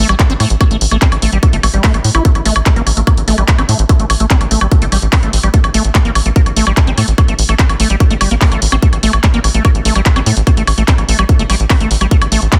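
A squelchy, resonant liquid acid bass carries the riff in this driving, alien psychedelic trance excerpt, its square-wave tone shaped by a filter sweep and thickened with chorus, sidechain pumping and dub echo while it sits in the G3 to E4 range. Beneath it, a tight, nasal sequencer bass pulses low between G1 and A2, a punchy, up-front blend of sawtooth and square wave with a filter pluck and fast, decaying attack that keeps evolving. The electronic kick drum arrives at 0.2 seconds with a tape-warm, layered thump that was re-recorded in a large room, set in small room ambience. Alongside it, a produced drum and bass kit adds handclaps, hi-hat and woodblock in 4/4 at 146 BPM with a straight feel. Rooted in A phrygian over an A5 chord, the whole cut is one continuous section lasting 12.6 seconds, finished in a dense, heavily limited modern master within a digital ambience.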